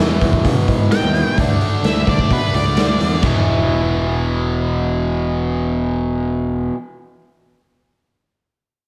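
Cathartic and restless, this quiet-loud alternative rock excerpt drives along at 129 BPM in a straight 4/4, centred on E major with a brief turn to Dadd9. A biting, overdriven electric guitar riff sits up front with slapback echo, while a picked electric bass adds a growly, direct-and-amped low end beneath it. Tucked in the background, an old ladder-braced acoustic guitar picks woody, boxy arpeggios on old strings, also touched by slapback echo. The raw garage drum kit, with punchy kick, medium-tuned snare, hi-hat and crash, sounds gritty and saturated with a rolled-off top, playing only from 0.2 to 3.3 seconds. Over the opening, a dark octave-fuzz lead guitar takes a distorted solo melody that stops at 3.2 seconds, just as the music returns to E. A lush hall reverb and small room ambience give the whole a big arena sound.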